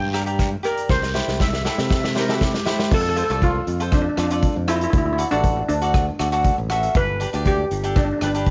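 Carefree and bouncy, this calypso excerpt in F major moves at 119 BPM. A shimmering, close-miked steel pan leads up front, opening with a solo until 2.9 seconds while the drums play a fill from 0.9 seconds, and a growly, bright fingered electric bass and a crisp, picked cavaquinho sit beneath a boomy street-band kit with dark cymbals. A raspy guiro sounds very quietly until 2.5 seconds, an airy wooden flute with unsteady vibrato slips by in the background around 2.2 seconds, and the home cassette recording adds light reverb and a muffled top end, with tape echo trailing the pan.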